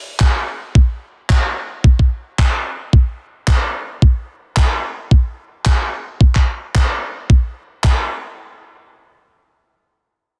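A steady 4/4 pulse at 110 BPM drives this nu-disco excerpt, with a light swing of 56% on the 16ths giving it a loose, rolling feel. The mood is groovy and sensual, built entirely from two percussion parts that enter together at 0.2 seconds. An electronic kick drum sits up front with a thumpy, sampler-style punch, carrying the weight of the beat. Handclaps, acoustic in character with a small-room, mid-forward tone, also sit close in the mix but rest a step beneath the kick. Both parts stop at 8.0 seconds, and the cut runs on to 10.4 seconds. The sound is dry and dense, with a heavily limited modern master that keeps the groove tight and present.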